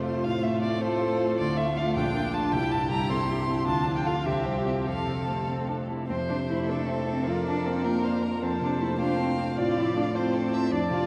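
A lilting compound pulse in six, shaped with supple rubato, drives this quick, graceful and lively classical-period movement for piano quintet, heard as a short excerpt from a longer work. A single bowed violin carries the melody with a rich, smooth and even tone and vibrato, while a second violin, placed close, adds an expressive second line with vibrato and portamento. The cello sings its own second line with warm, expressive portamento from a more distant position, and a viola sits in the background with a rich, smooth, even accompaniment. The clear concert grand stands up front, its intimate sound revealing audible action noise, deep bass and long sustain as it supports the ensemble. The phrase is stated and then begins again at 6.1 s over harmonies such as F/A, Dm, Bb and C, all bathed in a cavernous cathedral reverb that gives the production a dark glow.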